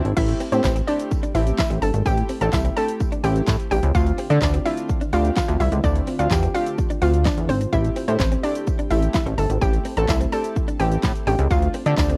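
A straight 4/4 pulse at 127 BPM drives this bittersweet yet confident dance-pop excerpt in A minor, built on a punchy, layered electronic drum kit up front, with a fat snare, bright hats, handclaps, shaker and crash, plus a very quiet, jingly tambourine. A glossy, sidechain-pumped synth bass sits up front, while a hollow, bouncy square-wave pluck carries the melody through chorus and tape echo. Behind them sit chorused retro synth keys, a clean, compressed direct-recorded electric guitar riff and a soft, breathy pad, in a dry home-cassette recording where the drop arrives at 0.2 s and moves between Am7 and Dm7.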